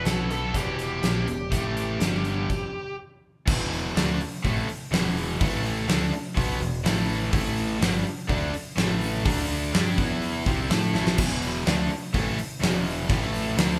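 Hard rock at 124 BPM in a straight 4/4, heavy and menacing, settling into E minor from 3.5 seconds in this cut from a longer piece. A dark, high-gain lead guitar carries a short melody over the opening and drops out for good at 3 seconds, during a stop from 2.5 to 3.5 seconds. Three rhythm guitars hold riffs throughout, sitting in the background: a bright cranked stack guitar and a dark, sludgy one, both overdriven, plus a bright double-tracked distorted guitar. A round, direct picked bass underpins them, while a huge arena drum kit sits up front with a fat snare, punchy kick, hi-hat and crash in a big room, marking a fill at 10.9 seconds. Power chords on E, A, D and G drive the riffs, and the band sounds like it is playing live together in one room with light reverb.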